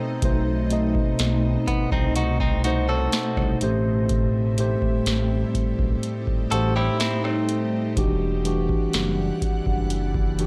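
A mellow, up-front tine electric piano provides accompaniment in this moody, longing contemporary R&B excerpt over B7b9, Am7 and Em9 chords, joined by an ethereal pad with chorus, reverb and phaser, bright picked arpeggios from a clean direct-recorded guitar with analog delay that stops at 7.9 s, a dark gliding synth bass, and a booming analog drum machine with a deep kick, crisp snare and metallic hats, all in a dry, gritty recording.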